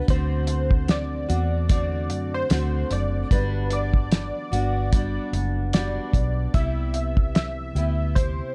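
A dark, warm production sits in a small room, giving this short cut from a longer indie and bedroom pop piece a sunny, laid-back glow at 74 BPM in 4/4 with a light swing on the sixteenths, in C lydian. Analog keys carry the melody with a mellow, detuned sawtooth tone, a filter sweep and a fast attack that decays, coloured by analog chorus and delay. A fingerpicked steel-string dreadnought guitar accompanies with a bright, full-bodied sound, audible finger squeaks, subtle chorus and a warbly pitch drift. Up front, a vintage foam-muted fingered electric bass sounds round and punchy through an amp, while a cloth-damped kit of kick, snare and hi-hat thuds along dry and smooth, pairing a fat snare and tight kick with a rolled-off top. The harmony moves from D7 at 0.1 seconds to Gmaj7 at 3.3 seconds and settles on Cmaj7 at 6.5 seconds.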